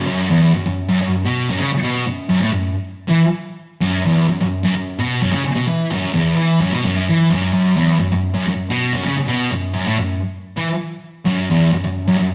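Rowdy and swaggering, this short rock excerpt runs at 129 BPM in a straight 4/4, with a thick, dark fuzz electric guitar playing alone from start to finish, picked and double-tracked up front in a low range from E2 to E3. It opens on an F#5 chord and moves into a second section at 7.5 seconds. The sound carries the rough, tube-saturated grit of a rehearsal room, bathed in a stony 1.2-second reverb.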